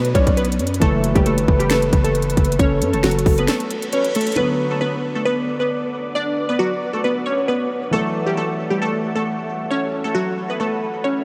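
A glassy wavetable pluck carries the melody of this melancholic, brooding half-time trap fragment over a breathy flute-like synth lead, a growling 808-style bass and a trap kit with hard-clipped kick, sharp snare, crisp hats and finger snaps, joined by a warm grand piano. A break arrives at 3.5 seconds as the bass drops out, and a reverse cymbal sweeps into the second section at 4.4 seconds, where the drums stop and a dark, warbling ambient pad enters at 5.4 seconds alongside the pluck and piano, the dreamy mix soaked in huge reverb.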